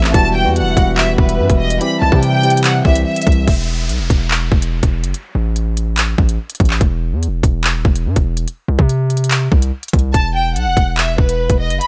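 A close, expressive violin section with vibrato, portamento and tape echo carries the melody in this menacing, dark half-time drill piece at 144 BPM in E minor, backed at first by a worn, slightly out-of-tune tine electric piano and a distant, roomy brass ensemble holding chords, before a break at 3.5 seconds leaves the punchy, heavy 808-style bass and the electronic drum kit of handclaps, crisp hi-hat and hard-clipped kick under an electronic downlifter, with the violins returning at 10.1 seconds.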